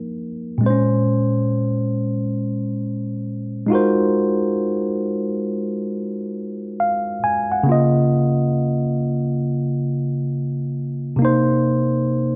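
A lone tine electric piano opens this sultry, introspective R&B fragment at 68 BPM in Bb minor, its sixteenths swung as it moves from F7sus4 into Bbm9 at 0.6 seconds, then through Ab13, Db69 and Cm7. The piano sits up front with a worn, slightly out-of-tune character, heard clean through a combo amp and tuned to A4 = 439 Hz. Light reverb and digital ambience surround it, and it plays on until the clip is cut off at 12.4 seconds.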